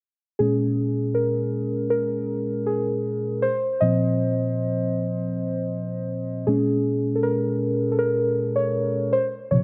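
Late-night and longing, this short R&B fragment features a single muted, felt-like synth keys part played solo from 0.4 to 9.6 seconds, its dark, warbling vintage tone thickened by chorus and a filter sweep, with a fast attack and a decaying tail. The keys sit up front and intimate, moving through Bbm7, Bbsus24 and back to Bbm7 before landing on Dbmaj7 at 9.1 seconds. A moderate, lush hall reverb surrounds the part with a soft sense of space.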